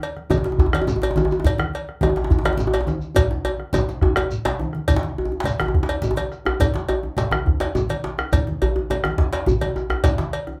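An up-front, medium-tuned djembe rings out in this earthy, powerful West African drum ensemble, playing in a live room at 140 BPM in a straight 12/8. A round bombo adds weight, while warm, low-tuned congas with a thick-skinned tone add body. A second djembe, struck with hard hands, sits further in the background, and a metallic cowbell cuts through close and dry. A grainy, mellow shekere with a vintage, band-limited character rustles at the back of the mix. The whole group is heard from further back in a small, reverberant room, and a drum fill from 3.2 to 4.9 seconds carries the groove into a new section that runs to the end of this cut from a longer piece.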